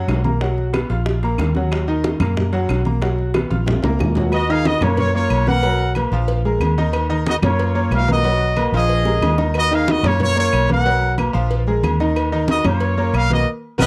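Passionate and danceable, this 184 BPM salsa excerpt in Eb minor opens with a brilliant, worn concert grand piano and a dark, round, foam-muted electric bass up front over background congas, tight bongos and cowbell, ringing timbales and agogo bells, and woody claves, before a drum fill at 3.3 seconds ushers in a bright, tight trumpet section carrying the melody from 4.3 seconds through Ebm9, Gbmaj7 and Bb7sus4 changes to a band accent at 13.5 seconds, all in a dry, close 1970s-style studio sound.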